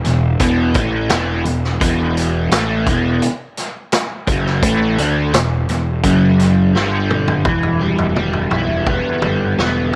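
A bright, double-tracked overdriven guitar riff through a rotary speaker leads this dark, hypnotic psychedelic rock excerpt in E dorian at 85 BPM, over a gritty, saturated vintage drum kit with a punchy kick and rolled-off top and a fuzz-driven picked electric bass, all in light small-room reverb, with a drum fill at 6.8 seconds carrying it into a new section at 7.5 seconds.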